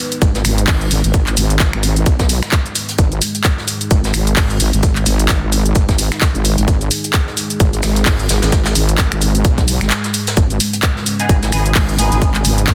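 Gritty and swaggering, this bass house excerpt in G# minor at 130 BPM with a 16th-note swing pairs a heavy, saturated wobble bass and a tight, tape-warm electronic kick up front with a house kit of finger snaps, handclaps, shaker and warm hats, a very quiet brushed jazz kit, and a moody, detuned analog pad pumping in the background, marked by a brief break at 9.9 seconds before a nasal, band-passed chord stab with phaser and dub echo appears at 11.2 seconds, all sealed in a dense, heavily limited master.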